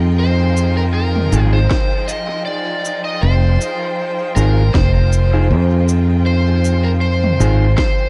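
This hazy, spacious ambient dub fragment opens on a clear, bowed string section holding a sustained Fm7 chord, its vibrato-tinged ensemble sound roughened by vintage 12-bit sampler grit, alongside a round, up-front fingered electric bass that anchors the low end. Almost at once an overdriven slide guitar, played with fingerpicks, carries the melody in a dark, overdriven voice trailed by dub echo. At 0.6 seconds an organic electronic drum kit joins with cabasa, toms and a woody snare re-recorded in a small room, also sent through dub echo. A mellow, clean electric guitar adds stabs from the background, and a punchy, layered electronic kick arrives at 1.7 seconds to give the lightly swung groove its weight. The echo-heavy mix sits in a light digital ambience, leaving plenty of open space around each part.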